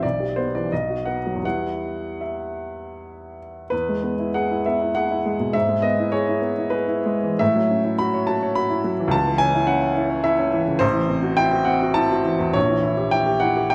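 Brooding and passionate, this romantic character piece for solo piano unfolds in a flexible, rubato triple metre, cut from a longer work. A clear, intimate baby grand sits up front with audible action noise and long sustain, ranging from deep bass to the upper treble across all 13.7 seconds, while a moderate reverb lends a natural sense of space. After a minor-key opening, the music turns to the major at 3.7 s and drifts through increasingly shadowed harmonies, arriving on a diminished seventh chord at 12.6 s.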